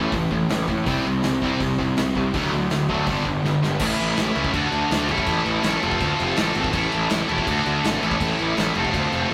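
Rebellious, energetic punk rock at 164 BPM in a straight 4/4, cut from a longer piece, where a bright, up-front tight distorted guitar and a dark, double-tracked fuzz guitar open on a riff over a growly, overdriven fuzz bass and a big acoustic rock kit with a punchy kick, medium-tuned snare, hi-hat and crash, until a drum fill at 3.4 seconds leads into a new section where the fuzz guitar drops out at 3.8 seconds, all captured as a rough rehearsal-room recording in a moderate stone room reverb.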